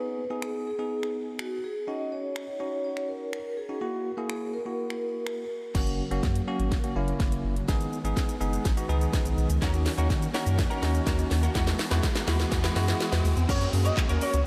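A dreamy mix soaked in a huge ambient reverb frames this energetic, driving dance-pop excerpt at 124 BPM in straight 4/4, tuned to A4 = 444 Hz. It opens with a mellow, close-miked vibraphone melody played with soft mallets, carrying motor vibrato and an analog delay, over a bell-like tine electric piano that pumps with the sidechain. A layered electronic house kit sits up front with a punchy kick, cracking snare, metallic hats, finger snaps, handclaps, shaker and crash cymbal. At 5.7 seconds a round, deep analog bass and a vintage string-machine viola pad with ensemble chorus arrive, both pumping, as a build-up and drum fill run to 13.5 seconds over chords moving from G#m through D#m7 and Eadd9 to F#. A very quiet riser and downlifter come in at 9.3 seconds, and a bright, picked electric guitar riff, recorded direct with ensemble chorus, follows in the background at 9.6 seconds. Near the cut, a smooth, expressive sawtooth lead glides in with portamento and vibrato to take up the melody.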